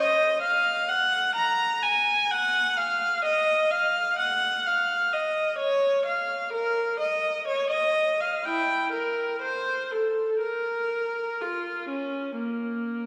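A classical, baroque-style suite movement for unaccompanied viola in Bb minor, this grave and solemn fragment moves slowly at about 60-65 BPM in 4/4 with a free, rubato feel, cut from a longer piece and lasting just over 13 seconds. The single bowed viola carries everything alone across a span from Bb3 to Bb5, its rich tone shaded with expressive vibrato and portamento. It sits up front yet sounds slightly distant, heard from further back in a church whose wet, lingering reverb of 2.6 seconds lends the line a cavernous gravity.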